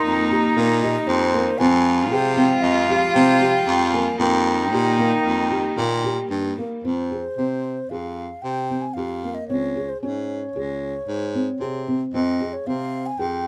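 Contemporary instrumental chamber music in an uneven 5/4 at 114 BPM, this F minor passage cut from a longer piece feels pensive and restless. A mellow wooden baroque flute carries the melody throughout, its airy tone marked by vibrato, a soft attack and an unsteady quality. A felt-muted upright piano plays dark, intimate arpeggios with audible action noise, while a breathy baritone saxophone takes the bass line up front, its raspy, gritty grain capped by a smooth top and light vibrato. For the first 6.6 seconds a distant, nasal cello with a gut-string, period-style sound adds a bowed second line, and a clear, focused studio string section holds sustained chords in the background until 6.8 seconds. From there the flute, piano and saxophone continue as a trio into a second section, with harmonies moving from Eb/F and Fmadd9 to Fm and Db5 before settling back on Fmadd9, all in a light reverb.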